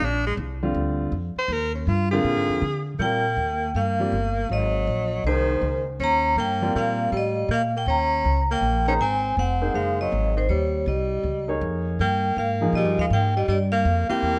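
Relaxed and playful, this swinging jazz piece moves at 160 BPM in Eb mixolydian, opening with a clear, punchy tenor saxophone solo full of scooped notes and vibrato over a woody, thumpy pizzicato upright bass, with a warm concert grand piano joining at 0.6 seconds. At 3.0 seconds the vibraphone takes the melody with medium hard mallets, its metallic, ringing tone carrying a fast motor vibrato, while the forceful saxophone shifts to a second line. Light reverb surrounds the parts in this section cut from a longer piece.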